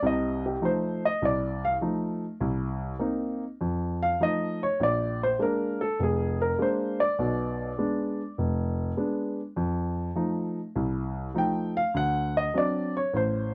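A dark, mellow baby grand piano plays alone from the start, in a relaxed, warm jazz passage at 101 BPM in 4/4 with a gentle swing on the eighth notes, ranging from F1 up to G5 in F mixolydian. The harmony moves through F7, Cm7, Bb7 and Bdim7 before returning to F7 and turning to D7 near 11.9 seconds. The natural, up-front piano sits in a dry, close 1970s-style studio sound with little reverb, in this 13.5-second cut from a longer piece.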